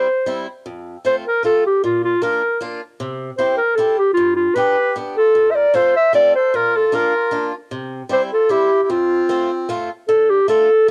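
Alpine folk dance-band music in 3/4 at 152 BPM, jolly and bouncy with a light swing, in F major. A mellow, smooth-topped clarinet carries the melody up front in a classical style, while a bright, boxy picked acoustic guitar supplies swing-style accompaniment with a cassette-tape tint throughout. From 4.6 to 9.7 seconds a reedy, breathy, nasal melodica adds a second line, all set in a wet booth ambience from a home cassette recording cut from a longer piece.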